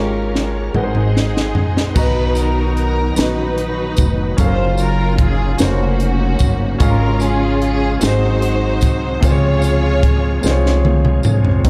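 A woody, growly pizzicato upright bass sits up front in this uplifting, jubilant slow gospel passage in 6/8. It is joined by a crisp fusion drum kit with a punchy kick and high-tuned snare in a pumping small room, and drum fills open and close the passage. A lush bowed string section carries the melody until 10.8 seconds, alongside a brief vibrato-laden alto saxophone phrase that sits in the background and ends at 1.2 seconds. A clear concert grand piano with deep bass and long sustain provides accompaniment, while a reedy tonewheel organ with key click and fast rotary speaker holds chords in the background and a jingly tambourine enters at 2.0 seconds, all set in a dark production with light studio reverb.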